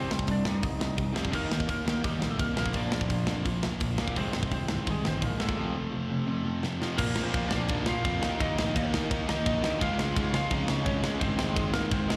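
This rowdy punk rock clip sounds like a live gig heard through the venue's PA, with small room and recital hall reverb around the band. At 170 BPM in a straight 4/4, a tight metal drum kit sits up front with bright cymbals, a medium-tuned snare and a tight kick, while a fuzzy picked bass with overdrive holds the low end in the background. A crunchy overdriven guitar with slapback echo and a hollow-body semi-hollow guitar play the riff behind the band, joined at 1.3 s by a double-tracked, high-gain distorted guitar that also carries slapback echo. Over the top, a twangy, slightly broken-up lead guitar plays the melody, compressed and trailed by slapback echo and delay. The chords move from Cm through Eb, Bb and F, and a drum fill at 6.6 s pushes the rebellious energy into a new section that runs through Db to Ab before the clip, cut from a longer piece, breaks off.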